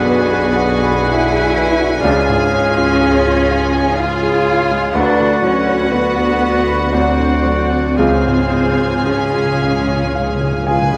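Set in a moderate scoring-stage reverb, this brief passage from a longer romantic movement for piano and orchestra unfolds in a rubato triple metre with a tragic, brooding mood. A warm baby grand piano with short sustain carries the melody alongside an expressive, close violin section with vibrato and portamento, while a bright oboe, a clear clarinet, an airy flute section and a very quiet, lush second violin section add second lines over a dark, distant bassoon and a background viola section. Underneath, a smooth symphonic cello section, a rich double bass section and a roomy tuba hold the bass; a very quiet French horn section and a vintage-toned trombone section enter with sustained chords at 2.0 seconds, and timpani struck with hard mallets add a fill from 8.0 seconds.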